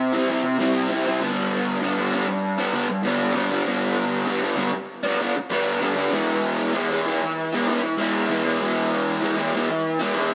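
A raw garage electric guitar plays alone, its picked, overdriven tone warm and lo-fi, double-tracked and up front, with lush chorus and tape echo thickening each note across a range from G2 to E4. This brooding, melancholic rock excerpt moves at a straight 98 BPM in 4/4, shifting from C to G at 1.2 seconds and to E at 6.1 seconds before it cuts off at 10.3 seconds. A moderate concert hall reverb gives the guitar a spacious, lingering tail.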